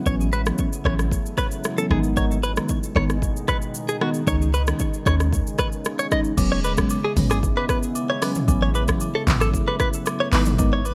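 Afrobeats at 114 BPM in E major, this romantic, sunny excerpt from a longer piece sets a clean, direct electric guitar riff up front with analog chorus and digital delay over a mellow tine electric piano bathed in lush chorus, with a deep, moody sawtooth pad holding slow-attack chords beneath, pumping with sidechain through its chorus and built-in reverb. A boomy, sine-like 808-style bass and an electronic deep house kit with a deep kick, dark hats, handclaps, rim clicks, shaker, toms and crash drive the groove, while close, dry agogo bells join in the background at 6.4 s. The chords move through A6, G#m and C#sus2, then E6, A6 and back to G#m, and the mix stays dry with little reverb.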